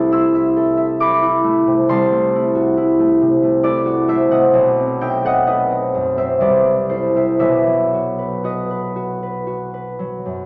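A solo concert harp opens the recording on an A minor chord over C, its thumb-plucked strings ringing up front in a wistful, gentle classical piece. The tempo drifts between 56 and 70 BPM in a flexible 3/4, with a rubato feel that lets each bar breathe. The instrument spans from a deep B1 up to a bright E6, and its acoustic tone is warm. The harmony darkens through a half-diminished chord over C at 1.9 seconds and an altered B dominant at 4.6 seconds, then touches C before settling on B. A wet recital hall reverb surrounds the harp with a lingering tail, framing this short passage cut from a longer piece.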